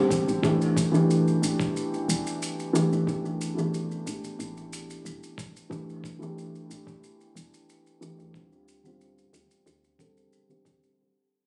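Organic downtempo with a warm, earthy mood, cut from a longer piece and fading out across its full 11 seconds. A felt-muted upright piano sits up front as the accompaniment, its thick felt giving a soft, boxy, mellow tone with audible action noise, shaped by sidechain pumping, delay and a low-pass filter that sweeps throughout. Beneath it, a round, dark FM bass with a woody character and fast, decaying attack stays in the background, also pumping to the sidechain. A sampler-style electronic kick with a thumpy, gritty punch and a compressed, tape-warm shaker keep a straight pulse, both sounding re-recorded in a large room. The harmony rests on A7sus4 over E from 0.4 seconds before moving to D minor at 8.3 seconds, all bathed in a lush hall reverb and the phone-captured ambience of the studio.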